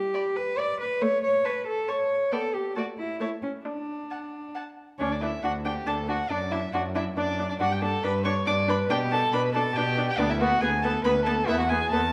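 The up-front, rich gut-string cello anchors this graceful, spirited classical-period string quartet movement in three, beneath a dark, nasal violin melody, a second violin line with the same period-style tone, and a reedy viola accompaniment with light vibrato, the upper parts sounding distant in a wet recital hall, with the music shifting into a new section at 5.0 seconds.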